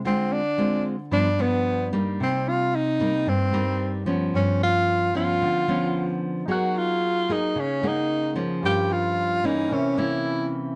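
Wistful and smooth, this bossa nova fragment sets a breathy, subtoned tenor saxophone solo with vibrato, scooped notes and a mellow jazz touch up front over fingerpicked, classical-style nylon-string guitar with fresh strings, while an intimate concert grand piano with audible action noise and deep bass slips in quietly behind them at 6.5 seconds, under light reverb in a dark, warm production.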